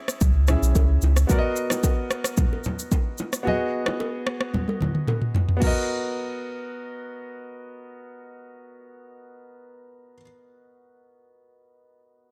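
A warm grand piano opens this romantic, joyful afrobeats excerpt in B major at 111 BPM, its intimate tone carrying audible action noise and a long sustain through chords moving from C#m to Bmaj7 and G#m7. A deep, thick sub bass joins at 0.2 seconds only briefly, while an overdriven electronic drum kit with a deep kick, rim clicks, shaker and toms drives the groove up front alongside bright, compressed congas and bongos played with soft hands. The drums close with a fill from 4.5 to 5.6 seconds before dropping out, and once the congas and bongos fall away at 5.9 seconds, the piano carries on alone in a dry, close sound until 12.3 seconds.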